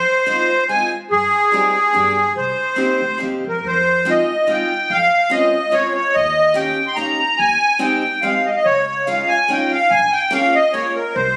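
An accordion opens this brief excerpt of a musette waltz, carrying the melody with a reedy, sweet tone and light tremolo tuning, close-miked, dry and up front in the mix. A picked steel-string acoustic guitar joins at 0.3 s with accompaniment, and an upright bass enters at 1.1 s, its pizzicato line woody and warm beneath the other two. The waltz moves in 3/4 at 144 BPM with a rubato feel, giving it a whirling yet bittersweet character. It begins in C minor and shifts to F minor at 3.6 s, where the harmony turns toward richer seventh and added-ninth chords. The players sit in a moderate scoring-stage reverb, captured on a phone in the room with studio ambience around them.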